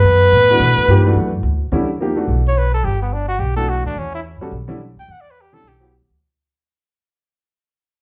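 A wet large-studio reverb places this short cut from a longer modal jazz piece further back in the room, giving it a cool, spiritual air at a brisk 214 BPM in 4/4 with swung eighth notes, tuned slightly low to A4 = 438 Hz. A clear, punchy trumpet carries the melody with light vibrato and a forceful, present tone. A mellow, roomy alto saxophone with a soft attack adds a second line on a single note in the background before stopping at 1.4 seconds. Beneath them, a woody, thumpy upright bass plucked on gut strings sits up front, and a baby grand piano with a natural, short-sustained tone accompanies from 0.5 seconds over an Em11 harmony. From 1.7 seconds the trumpet takes a solo as the recording fades out.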